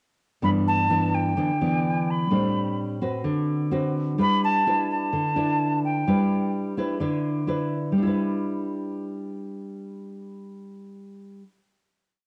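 A hollow concert flute and a nylon-string guitar open this short, sunny, romantic bossa nova piece together at 0.4 seconds, both up front. The flute carries a motif-based melody of song-like phrases in its high register, its airy tone marked by vibrato and a crisp attack. Underneath, the full-bodied, fingerpicked guitar supplies the classic bossa nova accompaniment of thumb bass and syncopated plucked chords, moving through gentle sixth and eleventh harmonies. The flute falls away at 6.5 seconds, leaving the guitar to hold a final chord from 8.0 seconds until it ends at 11.6 seconds. Both instruments carry a cassette-tape character, and a moderate spring reverb with studio ambience gives the home recording an intimate, slightly vintage glow.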